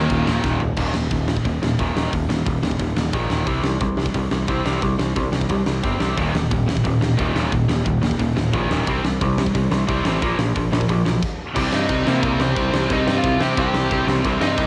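A growly overdriven bass sits up front in this upbeat, rowdy punk rock excerpt in Eb major at 178 BPM, alongside a big acoustic drum kit with a fat snare, a punchy kick and a bright stone-room sound that plays a quick fill near the start. A tight distorted guitar riffs in the background throughout, and after a brief opening burst a second compressed distorted guitar riff returns at 6.2 s. After a brief stop, a very quiet, double-tracked semi-hollow guitar returns with an overdriven hollow-body riff at 11.6 s and a dark high-gain lead melody comes back at 11.7 s, all in a small room with the tape-worn character of a home cassette recording.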